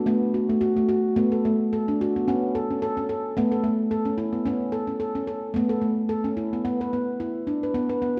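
World meditative music built on tuned percussion, this short cut from a longer piece is gentle and hypnotic, moving at 109 BPM in 4/4 with a light swing on the sixteenth notes. A solo handpan carries everything, its nitrided steel tones bright and ringing under sharp finger strokes, sitting up front in the mix and spanning A3 to B4. The harmony opens on a rootless D before shifting to A at 2.3 seconds, then drops into an unharmonized passage at 6.7 seconds as the music moves into a brief closing section. A wet scoring-stage reverb with a 1.5-second tail gives the notes a spacious halo. Over it all lies the character of worn old cassette tape, whose warbly pitch drift lends the meditation a faded, dreamlike quality.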